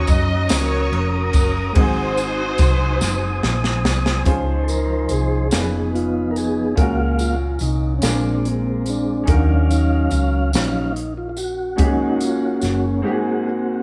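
In a slow, straight 6/8 at 48 BPM in Db major, this reverent, uplifting gospel passage opens with a bowed string section singing an expressive, vibrato-laden melody until 3.9 seconds over a bright, worn grand piano, a flute-like tonewheel organ with key click and fast rotary speaker, a round, dark hollow-body electric bass, a crisp fusion kit with punchy kick and high-tuned snare, and a jingly tambourine, all ringing in a moderate stone room, before a drum fill leads at 4.3 seconds into a mellow organ solo over chords moving from Dbmaj7 through Bb7 to Ab7.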